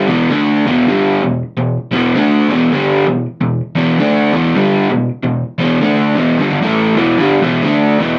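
Rock in a rowdy, raw mood: an unaccompanied electric guitar plays alone for the full 8.2 seconds of this fragment from a longer piece, opening on an E5 chord. The picked guitar is crunchy and overdriven, double-tracked and placed up front, spanning E2 to D4. A short, wet club reverb puts the sound in a small live room.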